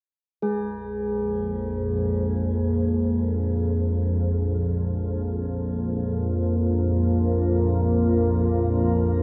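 A nasal, organ-like drone sits up front from 0.9 seconds, holding low notes under a deep, moody pad of sustained chords that enters at 1.5 seconds, while a pure, ringing quartz singing bowl, struck with a wooden striker at 0.4 seconds, adds a bright, airy shimmer with slow beating to this desolate, dark ambient drone piece in free time, all set in a moderate plate reverb.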